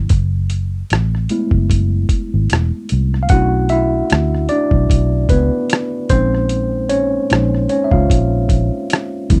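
Soulful and introspective, this dry, close 1970s-style neo-soul and R&B fragment at 75 BPM rides a light sixteenth-note swing as a worn, slightly out-of-tune tine electric piano takes the solo over F#m11, Bm11 and A#m11 chords, supported by a dark, round, foam-muted fingered electric bass and a gritty, compressed sampler-style soul drum kit of hi-hat, thumpy kick and rim click.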